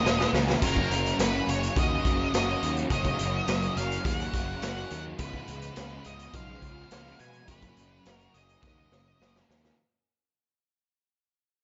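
The guitar riff, bass and lead guitar begin together with a drum fill on a raw, gritty garage kit with a punchy kick in this dreamy, wistful shoegaze and dream pop rock excerpt at 105 BPM in F# major. The riff is a bright, double-tracked overdriven guitar with ensemble chorus, over a round, fuzzed picked electric bass. An octave-fuzz lead guitar carries the melody with distortion and slapback echo over chords moving from Emaj7 to F# to C#7 to F#6, and the drums, saturated in a small pumping room, sit up front with a second fill from 8.6 seconds. The whole passage fades out across its 9.8 seconds, with little reverb and a rolled-off top that keeps the sound dark and close.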